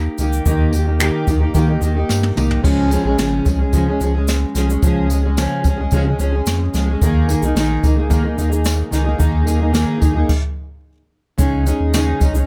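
A plugged-in, double-tracked fingerpicked steel-string acoustic guitar opens this sunny, carefree acoustic pop excerpt, paired with a deep, round sine sub bass. The jumbo guitar sits up front with a full-bodied tone bathed in plate reverb, while the bass holds sustained notes with a fast attack beneath it. A jazz brush kit joins almost at once in a studio room, bringing dark cymbals, a medium-tuned snare, a boomy kick, toms, shaker and finger snaps, with a jingly tambourine tucked close and dry in the background. A drum fill at 2.1 seconds ushers the harmony from Eb to Db, and the chords later settle on Ebsus4. A stop at 10.3 seconds briefly halts the band before a new section arrives at 11.4 seconds, all framed by a light overall reverb.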